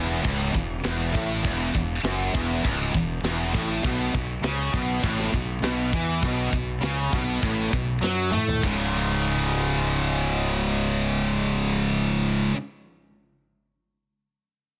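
Three picked electric guitars, two bright and overdriven with one double-tracked in the background and a high-gain one up front, open this excerpt with an epic, heavy metal riff over a growly, punchy fingered fuzz bass, while a tight acoustic drum kit with a medium-tuned snare and bright cymbals joins at 0.2 seconds, plays a fill at 8.0 seconds and stops at 8.8 seconds, leaving the guitars and bass to carry on into a C# chord in a dense, heavily limited small-room mix.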